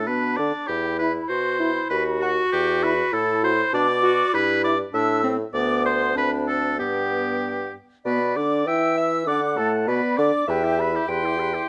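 Light reverb gives this recording a gentle sense of space around a wind quintet playing a quick classical-period movement, cheerful and spirited, in 2/4 at 99 BPM, cut from a longer piece. The concert flute carries the melody with an airy, vibrato-touched tone, though it sits distant and in the background, expressive and tongued, ranging from F#5 to E6. The oboe takes the second line up front with a clear voice and light vibrato, while the clarinet's present sound and the dark French horn, with its soft attack and smooth top, fill in the accompaniment. The bassoon anchors the bass from D2 to E3 with a mellow tone and light vibrato, sitting prominently in the blend. The harmony opens on Bm and moves through chords such as B/D#, F#dim/A and G, and at 8.1 s the opening idea returns on Bmadd11 before the excerpt closes on Em at about 11.7 s.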